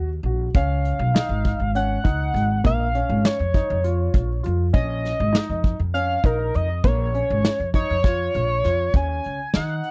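A shimmering pulse-width lead with chorus and slapback echo carries the melody over woody pizzicato upright bass, mellow arpeggios from a dark grand piano and a vintage brush drum kit in 7/8, giving this brooding, intricate progressive instrumental excerpt a dry, close 1970s-style studio sound.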